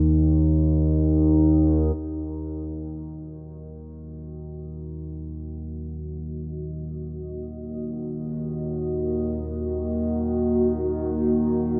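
An evolving, warbling analog drone with chorus, built from sawtooth and pulse waves, opens this ominous, vast dark ambient excerpt in free time, fading in from 2.0 seconds as the music settles on E-flat minor, before a deep, moody detuned pad with a sub octave and its own reverb enters at 4.1 seconds to hold sustained chords, the pair washed in a cavernous cathedral reverb.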